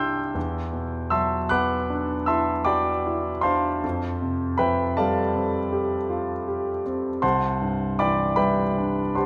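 Dreamy and luminous, this short fragment of impressionist classical solo piano drifts in a lilting triple-grouped metre with a free, rubato feel. A lone concert grand carries everything, its tone clear and polished, sitting intimately up front with deep bass and long, ringing sustain. The mechanical noise of the action can be heard beneath the notes, adding a close, tactile presence. The harmony glides from Em9 at 0.4 seconds to Fadd9 at 3.8 seconds and settles on Cadd9 at 7.2 seconds, colouring the passage with open, shimmering extensions. A generous concert hall reverb with a 2.2-second decay bathes the piano, letting each chord bloom and hang in the air across this brief portion of a longer piece.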